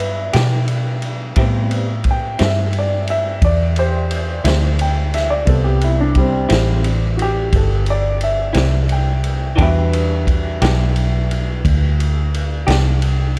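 Smoky and brooding, this slow 12/8 blues, cut from a longer piece, features a grand piano with long sustain and a subtle chorus carrying the solo over Em7 and Am7 chords, backed by a dark, round, foam-muted electric bass up front, a vintage kit of tight kick, medium-tuned snare and dark ride cymbal with a rolled-off top, and a slightly broken-up, lo-fi electric guitar with tremolo sitting in the background from 0.3 to 12.9 seconds, all set in a small room's light reverb.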